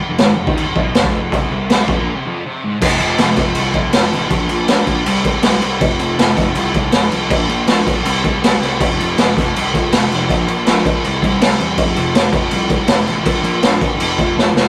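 A straight 4/4 beat at 161 BPM drives this rowdy, swaggering garage rock excerpt, led by an up-front, gritty drum kit with a punchy kick, medium-tuned snare and crash cymbal, which breaks off at 2.1 seconds and closes on a fill at 14.4 seconds. Behind it, a thick, double-tracked fuzz guitar with a dark distorted tone churns a riff over F5, Bb5 and C5 power chords, while a round, overdriven fuzz bass sits low in the background. The sound is rough and roomy, like a rehearsal-room take with moderate reverb.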